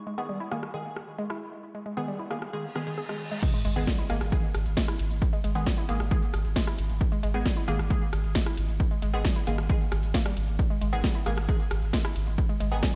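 Industrial and hypnotic, this driving peak-time techno cut runs at 134 BPM in a straight 4/4, taken from a longer piece. It opens on a very quiet, warbling lo-fi pad with a nostalgic, mellow glow that drops away at 3.5 seconds, while a woody wave-folded pluck riff with a noisy, ring-modulated edge and tape echo arrives almost at once alongside muted, detuned dub chord stabs coloured by phaser, lush chorus and cassette grit. A techno kit of cracking snare, smooth filtered hats, ride, rim clicks and crashes joins at 0.5 seconds, its cymbals and hats pumping under sidechain. A reverse cymbal and sub drop build in the background before the drop lands at 3.4 seconds with an impact, bringing in a punchy, up-front electronic kick. A deep, round sine sub bass, overdriven and pumping, settles on G#1 just after, anchoring the groove in a small, lightly reverberant space with a dark top end.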